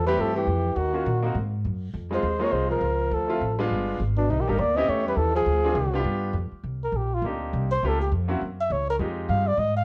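Heard through worn, warbling old tape with a light reverb, this moody late-night excerpt of small-group swing and bop features a veiled, punchy bucket-muted trumpet carrying the melody and taking a solo from 6.6 seconds, a breathy, whispered tenor saxophone second line that stops at 6.0 seconds, a woody, growly pizzicato upright bass with tube saturation sitting up front, and brilliant grand piano accompaniment.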